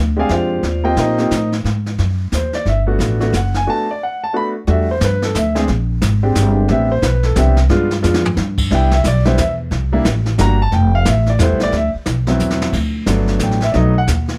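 A swung 3/4 lilt drives this warm, relaxed jazz piano trio excerpt, where a woody pizzicato upright bass and a clear, smooth grand piano with long sustain sit up front over a brushed drum kit with dark cymbals and a boomy kick, pausing for a break at 3.7 seconds and adding drum fills at 8.0 and 12.4 seconds in a lightly reverberant space.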